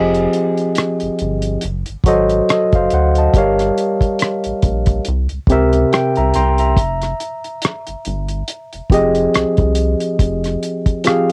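R&B with a neo-soul lean, this short excerpt from a longer piece moves at a slow 70 BPM in 4/4 with a lightly swung sixteenth-note feel, setting a late-night, soulful mood in F minor. Up front, a barky tine electric piano carries the accompaniment, bright and lightly overdriven through a combo amp with a cassette-tape tint, and it plays a fill between 5.5 and 6.8 seconds. Beneath it, a rubbery square-wave bass sits low between F1 and D2, hollow, nasal and bouncy with a resonant filter pluck, a moving notch and a fast attack on sustained notes, stopping at 10.6 seconds. A cloth-damped, thuddy acoustic drum kit of hi-hat, tight kick and rim click also sits close and dry, with a rolled-off top and its own cassette coloring. The harmony travels from Fm7 through F#dim7, Gm7b5 and C7 before returning to Fm7, all wrapped in light reverb and the intimate character of a home cassette recording.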